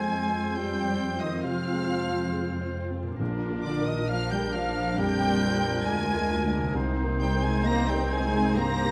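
A rubato pulse around 68 BPM in 4/4 carries this emotional, uplifting cinematic excerpt in Bb mixolydian, where a dark, expressive violin section sings the high melody over Fm, Bb and Cm7 harmonies, joined by second lines from a clear oboe, a mellow, roomy clarinet, an airy silver flute and a second violin section in the background. A felt-muted upright piano with audible action noise and a viola section with portamento accompany, while a French horn section holds sustained chords, a very quiet concert harp rings out fingerpicked arpeggios, and woody cellos with a distant double bass section anchor the bass. Timpani struck with hard mallets sound close and dry between 3.2 and 4.5 seconds, all set in light reverb with close, detailed miking.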